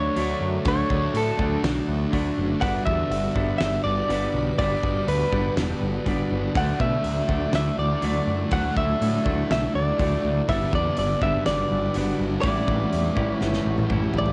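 A hazy, blissful slice of shoegaze and dream pop opens on a bed of guitars and bass: a clean electric guitar recorded direct carries the melody, compressed and up front, colored by cassette tape and analog delay. Beneath it, a raw garage guitar plays an overdriven riff with reverse reverb, and a thick, dark fuzz guitar plays a riff of its own with distortion and subtle chorus. A growling picked bass, round and overdriven, anchors the low end, while a very quiet, icy pad holds crystalline, airy chords with a slow attack and a long release. A loose indie drum kit joins at 0.2 seconds, its fat snare and punchy kick breathing in a pumping room. The harmony drifts through Dmaj9, Gmaj7 and Dadd9 before settling on an A9sus4, and a drum fill from 13.4 seconds closes the passage. Light reverb and the tape-worn character of a home cassette recording give the whole piece a soft, dreamy blur.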